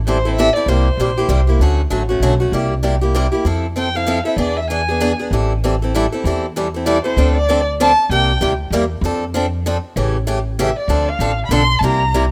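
A woody, thumpy pizzicato upright bass opens this swinging, bittersweet jazz manouche excerpt at 194 BPM in 3/4, joined at 0.1 seconds by a bright, boxy picked parlour steel-string guitar comping through chords like Am7, Dmaj7 and E7, while a bowed violin sings the melody in phrases with vibrato and portamento, returning at 3.8 and 10.6 seconds, all set in studio reverb within a rough home demo mix.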